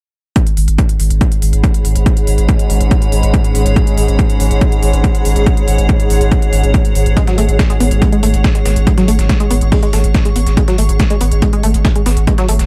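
A punchy, tape-tinged kick sits up front with a thick, overdriven sub bass on G#1 in this intense, industrial peak-time techno cut at 141 BPM in G# minor, where smooth electronic hi-hats, a nasal pulse-width drone in the background and a blurred granular cloud pad with built-in reverb all pump against the kick, before a detuned sawtooth sequenced riff with tube saturation and dub echo and a gritty sampler-style kit with a fat snare both enter at 7.2 seconds.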